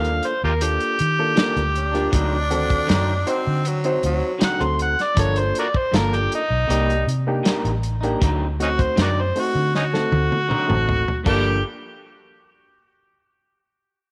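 A straight-eighth 4/4 pulse at 79 BPM drives this brooding, mournful soul blues in G minor, where a gritty, up-front amplified harmonica carries the melody with tongue slaps and scooped notes over a barky reed electric piano with spring reverb, bright twangy guitar stabs, a round, foam-muted fingered bass and a muffled, dry soul drum kit that rolls into a fill at 9.7 seconds, while a raspy tenor saxophone adds a second line from 1.8 to 4.4 seconds before returning briefly at 11.3 seconds.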